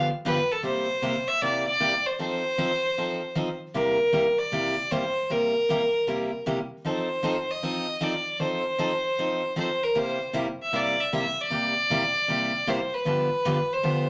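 Swinging and down-home, this country excerpt at 155 BPM in C mixolydian sets a clear, earthy bowed fiddle carrying the melody with light vibrato over a bright, full-bodied picked jumbo acoustic guitar, both playing throughout the 14.1 seconds and shaped by a wet club reverb as the chords move from G7 through C9, F7 and C7.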